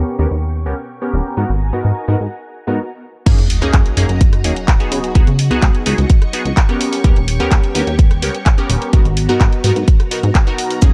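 A straight 4/4 pulse carries this funky, joyful filtered disco house excerpt, which opens on a punchy, wave-folded analog bass pluck up front, a bright, detuned polysynth comp with chorus and phaser, and lush vintage string-machine chords in the background, each pumping against the sidechain beneath a low-pass filter sweep. At 3.3 s the drop hits with a punchy, layered electronic kick, a house kit of crash, handclaps, rim click and bright hats, and a background sub drop that lasts until 5.2 s, while the chords move through lush minor-ninth and altered harmonies. Close, dry maracas slip in softly at 10.8 s, and the whole mix has a dark production with little reverb.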